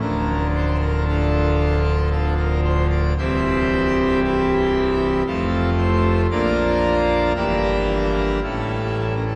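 A solo pipe organ on full registration opens this grave, dark classical chorale, its brilliant mixtures and romantic voicing spanning from C1 up to D5 at a slow, rubato 57 BPM in 3/4. In D minor, the harmony moves from Dm through C, F and Bb to Em7b5/G, arriving on A7 at 8.4 seconds before this excerpt from a longer piece is cut off. The majestic organ sits up front in the mix, while a wet cathedral reverb with a 5.2-second decay places the listener further back in the room.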